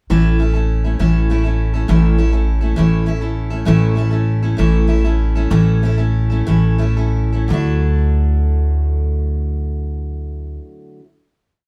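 Recorded live in one room with moderate studio reverb, this short, complete folk rock and heartland rock piece in D major has an open-road, hopeful mood, moving in a straight 6/8 at 57-67 BPM by the dotted quarter. A full-bodied jumbo steel-string acoustic guitar sits up front, strumming open chord shapes in sixteenths. A woody pizzicato upright bass underpins it with simple root and fifth lines. The pre-chorus rests on an A chord and slows down from 3.7 seconds before settling onto a Dadd9 final chord at 7.5 seconds.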